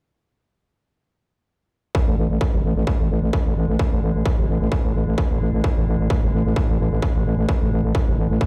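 A distorted, up-front electronic kick opens this dark, intense stretch of driving peak-time techno at 1.9 seconds, joined at 2.1 seconds by a thick, growling FM bass pumping against it, while from 2.6 seconds an eerie, metallic drone with chorus and its own reverb warbles in the background, all heard as if played on a big sound system in a bare, cavernous room.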